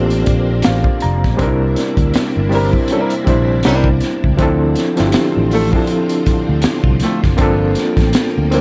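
At a slow 80 BPM with a swung sixteenth-note feel, this introspective, sultry neo-soul excerpt pairs a crunchy, saturated breakbeat kit with a punchy kick and high-tuned snare, a punchy, amped fingered bass, and a reedy, overdriven electric piano with fast tremolo that plays a fill near the start, while a shimmering, chorused string machine sustains chords and a fingerpicked flamenco guitar enters at 2.5 seconds, all moving through Bbmaj9, C9, Dm7 and Gm11 in a dark production with light reverb.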